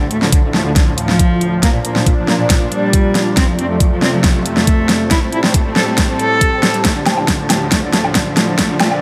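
Aggressive and chaotic, this heavy wobble dubstep excerpt builds in D minor at 138 BPM with a half-time feel, cycling through Dm, Bb, F and Am7 while a drum fill runs throughout. A close, nasal, gut-string bowed cello carries the melody through tape echo over a lush, detuned supersaw pad that pumps against the sidechain, joined at 0.7 seconds by an ethereal, mellow pad with chorus, tremolo and its own reverb sitting in the background. Up front, an overdriven kit with a huge snare, hi-hat and woodblock drives alongside a knocking electronic kick, and a barely audible riser creeps in at 7.9 seconds, all within a moderate room reverb.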